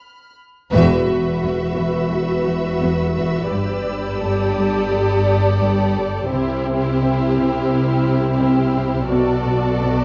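Uneasy and mysterious, this cinematic suspense cue is cut from a longer piece and built entirely from bowed string sections. A high violin section opens alone, holding a rich, soft-attacked texture above the rest. At 0.7 seconds the full ensemble arrives with an accent. A distant, expressive violin section carries the melody over a second violin line and a clear, focused viola accompaniment. Beneath them, a cello section plays a riff while a smooth, even double bass section and a background cello section share the bass, moving through Esus2, Gsus2 and C before arriving at Bm7. A wet scoring-stage reverb surrounds the sound, and a worn cassette-tape character adds a warbling pitch drift that deepens the sense of unease.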